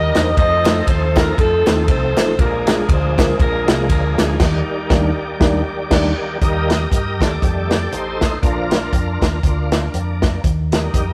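A bright, shouting tonewheel organ with slow rotary speaker, light overdrive, chorus vibrato and key click takes a solo from 6.4 s in this uplifting, reverent, swung uptempo gospel excerpt at 119 BPM in Eb major, after a smooth, jazz-style saxophone section carries the melody until 5.9 s over mellow tine electric piano, a round, punchy fingered electric bass, a tight, roomy soul drum kit with dark cymbals, and very quiet, crisp handclaps that stop at 4.3 s, captured as a rough rehearsal-room recording with stone room reverb and saturation.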